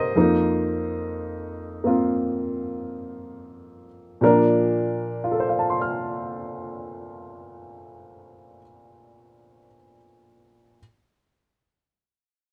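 Sophisticated and warm, this brief solo jazz passage cut from a longer piece features a lone upright piano with a woody, open tone and short sustain, sitting up front. Played with a swung eighth-note feel, it moves from an F7sus4 chord to a Bbmaj7 at 4.2 seconds. Moderate club reverb and a dark production frame the piano in an intimate club atmosphere.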